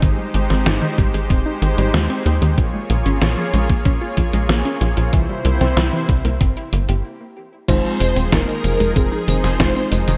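Moody and driving, this short synthwave cut from a longer piece moves in a straight 4/4 with a dark, warm production and light reverb. A tight, punchy sequencer bass sits up front with sidechain pumping, joined by a thumpy, overdriven electronic kick and a detuned 8-bit drum machine supplying crash, hi-hat, a medium-tuned snare and tambourine, both re-recorded in a small room. A smooth soft supersaw holds sustained chords, also pumping, while a lush unison pluck runs arpeggios through tape echo, its sound swept by a filter through the first 7.7 seconds, with a stop from 7.0 to 7.7 seconds. The chords move from Abmaj7 through Bbm7 and C7 before settling on Fm7 at 7.7 seconds, where a full-bodied octave-layered synth lead takes the melody with chorus, phaser, vibrato and digital delay. A shimmering string machine adds a second line in the background, and a round, warbling FM electric piano adds vintage stabs with tremolo and a cassette-tape character.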